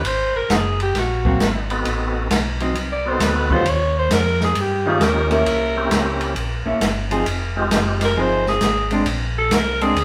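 A growling, raspy alto saxophone solos with gritty, distant tone over a swinging, bluesy soul jazz organ trio, alongside a lightly overdriven percussive tonewheel organ melody with slow rotary speaker until 8.1 s, a round, mellow organ bass line, a dark, clean hollow-body jazz guitar entering at 1.3 s, and an open, boomy jazz drum kit, all ringing in a stone room as a band playing live, cut from a longer piece.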